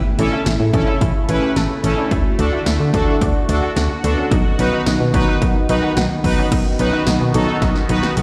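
A driving, nocturnal synth-pop clip opens with an airy, evolving pad of detuned sawtooth chords with a slow attack and a filter swell, a warm analog pluck tucked in the background, and a round, dark FM bass with a fast, decaying attack, all moving through A, D and B. Just after, at 0.2 seconds, a punchy analog drum machine joins up front with kick, snare, hi-hat and crash, its overdriven tone re-recorded in a large room. A bold, fat synth brass enters at the same moment with wave-folded, ring-modulated sawtooth tones, a filter sweep and a chorused sheen that sits brightly at the front of the mix. The pluck's arpeggios carry chorus and tape echo, and the pad and brass also share a chorus shimmer. The section changes at 6.5 seconds, and a drum fill closes the clip from 7.6 seconds, with the whole mix ringing out as if played over a big sound system in a bare stone room with light digital ambience.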